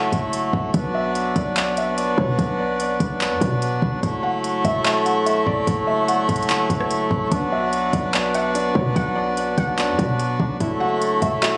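A hand-pumped harmonium opens this hazy, ethereal cloud-rap clip, its reedy, breathing chords sitting up front with a sidechain pumping effect, alongside a soft, felt-muted upright piano melody with delay in the background and a deep, boomy 808-style bass. The piece is in B minor at 146 BPM in 4/4 with a half-time feel, tuned to A4 = 435 Hz, and it moves between F#m7 and Bm. From 0.1 seconds a smooth R&B drum kit carries handclaps, hi-hat, a soft kick and rim clicks, with smooth hats, a tape-warm character and vintage 12-bit sampler grit. At 7.3 seconds a warbly, dusty, detuned sawtooth pluck enters in the background with arpeggios, its dark lo-fi tone colored by chorus, delay and a filter sweep. The sound has the intimacy of a phone recording in the room, with light studio reverb and compression.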